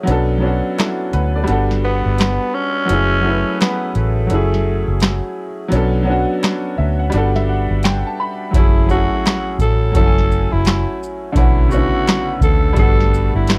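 Lo-fi hip hop with a nostalgic, reflective mood, built on a booming analog drum machine with a deep kick, crisp snare, metallic hats, handclaps and shaker, under a round, foam-muted fingered electric bass and a bright, woody upright piano whose action noise is audible through a low-pass filter. A raspy, breathy tenor saxophone enters at 1.8 seconds to carry the melody in a growling jazz style, while the opening stretches as a break in which the kick drops out from 5.7 seconds and the piano plays a fill until 8.5 seconds. The mix is dark and lightly reverberant, with every part placed up front, and the excerpt is cut from a longer piece.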